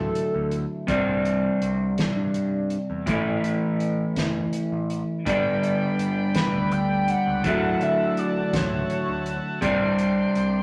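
Hazy and hypnotic, this brief psychedelic rock fragment in a slow 6/8 rests on a dark, slightly broken-up electric guitar riff heard up front through a small old amp, a growling overdriven picked bass, and a soft-mallet drum kit with a fat snare and boomy kick in a big room, while a buzzy vintage combo organ adds sustained chords from 5.3 seconds and a screaming, gritty synth lead with distortion, chorus and vibrato carries the melody briefly at the start and again from 6.4 to 9.4 seconds over chords moving from Dadd9 through Csus2, A and G.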